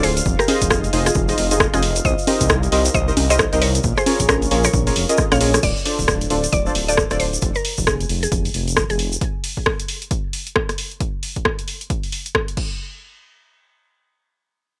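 Soulful and late-night, this swung two-step UK garage excerpt at 134 BPM rides on a rumbling, beating detuned saw bass and a punchy analog drum machine of congas, hi-hat, rim click and crash cymbal alongside an electronic kick, while a grainy tube shaker adds vintage texture, soft chord stabs with chorus and 12-bit sampler grit move through Fm7, Cm7 and Bbm7, a woody, round, mallet-like FM pluck carries the melody through chorus, cassette tape and tape echo until 9.1 seconds, and a very quiet, warbling pad sustains beneath the opening drop until 5.6 seconds, as a drum fill closes the drop, with the mix sitting dry.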